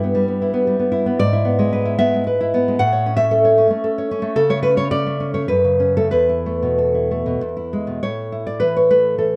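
A dark, full-bodied nylon-string guitar, fingerpicked up front with a touch of slapback echo, carries this nostalgic romantic classical solo in A major (tuned to A4 = 442 Hz), moving in a rubato 3/4 at about 90-116 BPM through chords from Em/G and E7/G# to A, F#m, Esus4 and E before shifting into a new section on A5 at 8.0 seconds, all captured by close, detailed microphones in light reverb as a brief cut from a longer piece.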